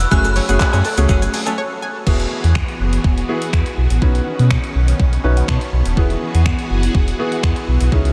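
A dreamy mix soaked in a huge ambient reverb opens this energetic, bittersweet dance-pop passage at 123 BPM in a straight 4/4, cut from a longer piece. Up front, a gated 80s digital drum machine with a thumpy kick, handclaps, finger snaps, hi-hat, shaker and crash has a tape-warm, sampler-style character. A deep, full sub bass with an added octave pumps against the beat. At the start, a ringing, inharmonic FM synth chime carries a brief melody with ensemble chorus and delay. A clean, direct-recorded electric guitar riff with lush chorus and a round, detuned analog pluck playing arpeggios sit in the background. The chime and guitar fall away by a short break at 1.6 seconds, while the pluck carries on into the break until 1.9 seconds. A clear concert grand piano accompanies throughout with short sustain and lush chorus, adding a fill at 5.0 seconds. The harmony opens on F#madd9. From 2.1 seconds a swirling, vintage string machine with a phaser holds sustained chords as the harmony moves through Eadd9 and Badd9 back to Eadd9.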